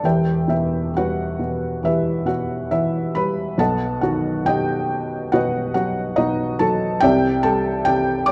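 A felt-muted upright piano plays alone and up front in this short fragment of calm, lyrical classical music in E minor, moving at a rubato 65-72 BPM in 4/4 across a range from E1 to D6. Its soft, mellow, intimate tone carries audible action noise, captured by close, detailed microphones within a moderate recital hall reverb. The harmony moves from Em to B at 3.6 seconds and on to Cadd9 at 7.0 seconds, lending a warm, gentle mood.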